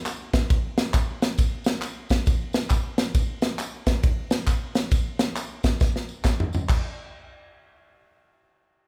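A modern studio drum kit and a layer of group handclaps, tambourine and maracas open this uplifting, jubilant gospel excerpt together, riding a swung 4/4 groove in a small room with light reverb. The airy, polished kit sits up front with a punchy kick, a medium-tuned snare, ride and crash cymbals, and toms, and it plays a drum fill from 5.8 to 6.7 seconds. The acoustic hand percussion sits further back in the mix and carries on until 7.0 seconds, just after the kit stops.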